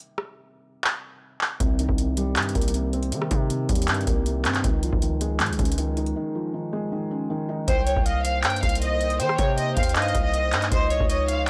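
A half-time trap groove from a booming analog drum machine, with a deep kick, metallic hi-hats, handclaps and rim clicks, drives this menacing, melancholic hip hop excerpt, joined at 1.6 seconds by a distorted, saturated 808-style bass and a felt-muted upright piano playing soft, mellow chords, until a lush bowed violin section with vibrato takes the melody from 7.7 seconds, shadowed by a breathy, flute-like synth lead as a second line, over a moody sawtooth analog pad with chorus and phaser that enters at 8.2 seconds and sits in the background, all captured as a dry, gritty hardware recording.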